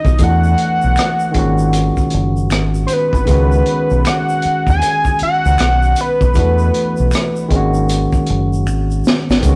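A swung 78 BPM groove in 4/4 comes from a crunchy breakbeat drum kit with a high-tuned snare, tight kick and gritty, saturated tone, joined by a round, punchy dub bass from 0.1 seconds and a faint, close tube shaker with finger snaps, with a drum fill at 8.7 seconds. Over it, a barky tine electric piano carries sus chords moving through E9sus4, G#9sus4 and C#9sus4 in this sultry, smooth neo-soul excerpt. A fat, detuned sawtooth analog lead with vibrato sings the melody until 7.5 seconds, all set in a moderate stone room with rough rehearsal-room character.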